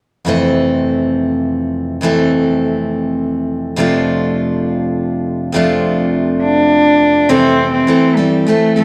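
A picked steel-string acoustic guitar opens this excerpt of gentle, hopeful acoustic folk, bright and full-bodied, setting out an accompaniment in F major at 102 BPM in a straight 3/4. Its chords move from Fmaj7 to Dm7/F and back to Fmaj7, giving the waltz-time figure an open, easy lilt. At 6.4 seconds a single bowed cello enters up front with the melody, its tone reedy and slightly nasal, with the airy bow and light vibrato of a period-style gut-string sound. The cello sits a touch louder than the guitar, and both parts carry on until the fragment is cut off at 8.8 seconds. A moderate studio reverb lends a modest sense of space. Over it all lies the worn character of old cassette tape, with a warbly pitch drift that gives the recording a faded, home-made feel.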